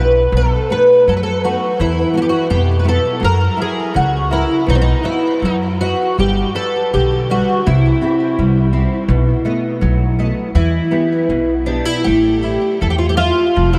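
A fingerpicked twelve-string acoustic guitar carries the melody up front, its old strings giving a woody, shimmering, octave-doubled tone, colored by analog chorus and delay. This is a fado-style ballad in E minor at 82 BPM in 2/4, played with rubato and uneven beats, and its mood is passionate and longing. Beneath it, a fingerpicked nylon-string guitar with a classical character supplies accompaniment, also touched by analog chorus, while a pizzicato upright bass on gut strings sits up front with a dark, thumpy sound. All three parts play throughout this excerpt, moving through chords such as B7, Em, F#7, G and C before shifting into a new section at 12.1 seconds on an A5. A huge ambient reverb with a long tail soaks the mix, giving it a dreamy, suspended atmosphere.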